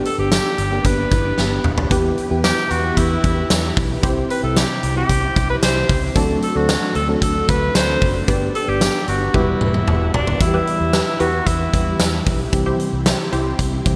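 A tremolo-laced FM electric piano and a very quiet, sawtooth string machine of violas open this moody, urgent 1980s-style pop piece in E minor at 113 BPM, joined at once by a huge arena drum kit with a fat gated-reverb snare and punchy kick, plus a dark, foam-muted fingered bass. A bright alto saxophone carries the melody with light vibrato and delay, while a woody soft-mallet marimba slips in briefly at 1.1 seconds and a funky, detuned polysynth adds chorused stabs from 1.9 seconds. Drum fills arrive at 1.4 and 9.3 seconds, the second leading into a new section at 10.4 seconds. The glossy digital production sits in a lush hall reverb, moving through G, Em, C and D7 before settling on Em and C.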